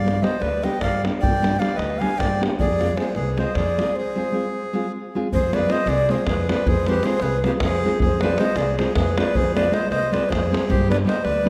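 A breathy, bright low ney carries the melody from the first instant, alongside a reedy accordion second line, a full-bodied nylon-string guitar and a woody, dark pizzicato upright bass, with a tight, distant davul joining at 0.1 seconds. This fiery, restless cut from a longer piece of Balkan wedding-band folk runs at 311 BPM in eighths, in a straight 7/8 feel, in F dorian sharp4. The ney stands slightly forward of the others, its crisp attack and vibrato giving the line an edge. The accordion sounds clear with a dry tuning, and the guitar is fingerpicked with audible finger squeak and a deep classical tone. A break falls between 4.0 and 5.3 seconds before a new section begins, and the harmony shifts from G to F minor and back to G at 10.7 seconds. A wet concert-hall reverb with a 1.8-second decay surrounds the ensemble.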